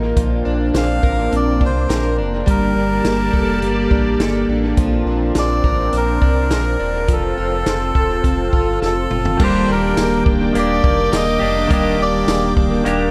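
Dream pop at 104 BPM in Bb major, this ethereal, dreamy excerpt from a longer piece sets a shimmering, octave-doubled twelve-string acoustic guitar picking arpeggios over a swirling, detuned analog pad with phaser and chorus, a deep sine-and-triangle sub bass, and a vintage drum kit with punchy kick, dark cymbals and tambourine. A reedy, breathy melodica carries the melody through analog delay from 0.8 seconds. After a drum fill, a clean, compressed semi-hollow electric guitar with tremolo and analog chorus enters at 9.4 seconds as the harmony moves to Ebmaj7, all within a light, echo-heavy small-room ambience.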